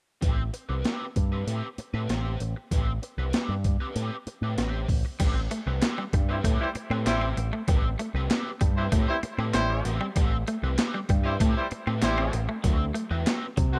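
A straight 4/4 funk groove at 97 BPM drives this short cut from a longer piece in A dorian, with a sampler-style breakbeat kit up front: gritty, tape-warm, compressed drums with a thumpy kick, a medium-tuned snare, hi-hat, handclaps and crash cymbal. A picked electric bass run through an envelope filter sits equally forward, punchy and direct, while a crunchy overdriven guitar with wah fills in the accompaniment from the start, all resting on an Am9 chord. At 5.2 s the music moves into a new section as a clean, twangy electric guitar enters in the background with a bright, compressed riff bathed in spring reverb. A clear horn section joins at 6.3 s with a second line, its light vibrato and vintage pop-style ensemble sound carried by tape echo. The harmony shifts to D13 near the end, and the whole has the dry, rough feel of a home demo mix with a driving, funky mood.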